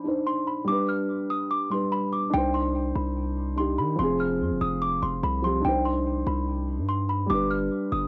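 Drill hip hop at 145 BPM in a half-time feel and C harmonic minor, cold and ominous, where a bell-like, delicate celesta melody and a dark, boxy grand piano accompaniment, both low-pass filtered with a cassette-tape tint, move through Cmadd9 and G before a distorted, heavy 808-style bass with a fast attack enters at 2.3 seconds, after which the harmony passes through Fm and back, all set in studio reverb on a home cassette recording cut from a longer piece.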